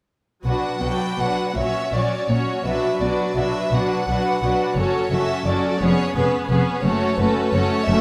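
A slow, solemn and melancholic classical movement for string orchestra in B minor and a rubato 6/8, cut from a longer piece, where an intimate, sul tasto first violin section with light vibrato carries the melody over a smooth second violin line, a clear, focused viola accompaniment, a rich cello bass sitting in the background and a lush double bass section, all entering within the first second and sounding in a wet recital hall reverb as the harmony moves from B minor toward F-sharp minor by around 4.8 seconds.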